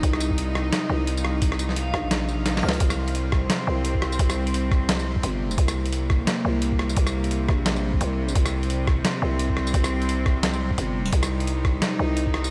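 Light reverb frames this dark, cinematic passage, cut from a longer half-time drum and bass piece in C minor at 173 BPM with a swung 16th feel, its pitched-down, sampler-style drums re-recorded in a large room. A bowed cello section holds sustained chords on C minor, its reedy, gut-string period tone caught close in the studio yet roughened by vintage 12-bit sampler grit and pumping from sidechain compression. Beneath it, a growling, buzzy 808-style bass with tube saturation sits up front, each note striking fast and then decaying. The gritty boom bap kit brings hi-hat, rim click, a medium-tuned snare and tambourine, compressed and up front, alongside a thumpy electronic kick. In the opening seconds a very quiet reversed, granular texture swells dreamily, and at 2.5 seconds the kick drops out for a drum fill before the drop carries on from 2.8 seconds.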